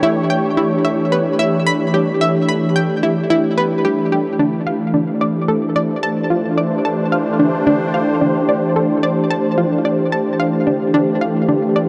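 Ambient, sequencer-driven space music at 110 BPM in 4/4, expansive and hypnotic, this passage is cut from a longer piece and moves from Em7 to Dm7 at 4.4 seconds. An airy, evolving pad of detuned sawtooth with a noise layer, a filter swell and a slow attack holds sustained chords up front with chorus, while a round analog pluck with a sub octave and filter sweep plays a riff through chorus and tape echo. Both sit in a huge, wet reverb that places them in a vast, echoing space.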